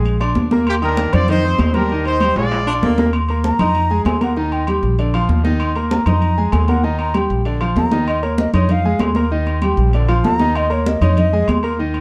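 A dark, warm production with light reverb frames this festive, sunny salsa, cut from a longer piece and moving at 194 BPM in a straight 4/4 in Eb major. Up front, a bright concert grand piano lays down brilliant, polished accompaniment with deep bass, while a woody, thumpy pizzicato upright bass on steel strings anchors the low end. High-tuned congas struck with hard hands and ringing metal-shell agogo bells and timbales give the percussion a vintage, band-limited tone. At 0.7 seconds a warm trumpet section carries the melody with a smooth top and light vibrato, and a breathy, whispered baritone saxophone adds a brief, intimate second line near 2.7 seconds as a drum fill closes the opening passage. From 3.4 seconds a wooden flute takes a solo over a repeating cycle of Eb5, Fm7, Eb and Bb, its pure, vibrato-tinged tone marked by a crisp attack and lifted highs.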